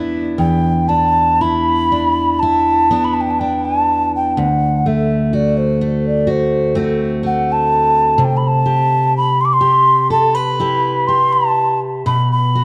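Celtic folk in the manner of a slow air, this haunting, mournful fragment of a longer piece unfolds in a free, rubato 4/4. A picked steel-string dreadnought guitar starts at 0.0 seconds with a full-bodied accompaniment through E5, D7, Cmaj7 and B5 chords, and a breathy alto clay ocarina enters at 0.4 seconds to carry an expressive, tongued melody with vibrato. Both instruments sit up front within a moderate scoring-stage reverb, giving the dark, warm production a spacious glow.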